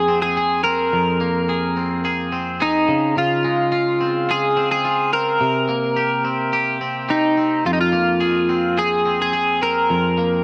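An up-front, moderately roomy booth sound frames this mellow, lonely indie pop excerpt, where a picked, slightly broken-up electric guitar carries the melody through analog chorus and digital delay while a bright, clean twangy guitar with lush chorus and warbly pitch drift accompanies it over chords moving from Fmadd11 through Dbmaj7 and Cm7 and back.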